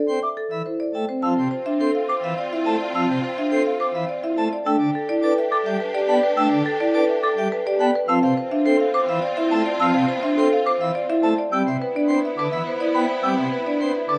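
Up-front marimba melody with medium hard mallets, ringing soft-mallet vibraphone arpeggios and a brilliant, full plenum pipe organ open this hypnotic, meditative minimalist pattern piece in D dorian at 105 BPM in 3/4, joined at once by airy, expressive silver flute arpeggios and, from 1.2 s, a clear, focused bowed string section holding sustained chords through Dm7, Em7, Dm7 and Cmaj7, all set in light reverb.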